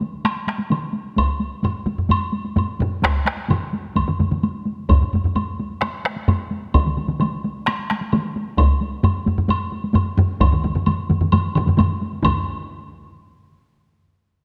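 A taiko ensemble struck with heavy sticks opens this driving, ceremonial Japanese traditional drum piece at 0.0 s, with a woody woodblock joining at 0.2 s and further taiko layers building in by 1.6 s at a straight 130 BPM in 4/4. The drums mix close, dry strokes with small-room body, and a hard-stick taiko and a heavy-stick small-room taiko sit up front, while the woodblock carries a live-room ring. Close, detailed microphones catch every hit inside a moderate concert-hall reverb, and this excerpt from a longer piece shifts into a new section at 12.2 s.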